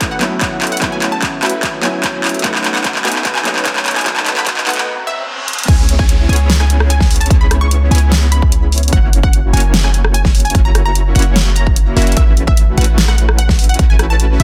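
A half-time 4/4 pulse at 148 BPM drives this emotional, lush future bass excerpt in C# minor. A felt-muted upright piano with audible action noise, a filter-swept supersaw stab and a bright, detuned unison pluck melody build over a drum fill and a very quiet riser and reverse cymbal until a break at 4.9 seconds. Then the drop at 5.7 seconds brings in a deep, boomy 808-style bass beneath the punchy electronic kick and the big-room kit's huge up-front snare. The bass and pluck pump under sidechain, with tape echo trailing the pluck, all through a dense, heavily limited master with light reverb.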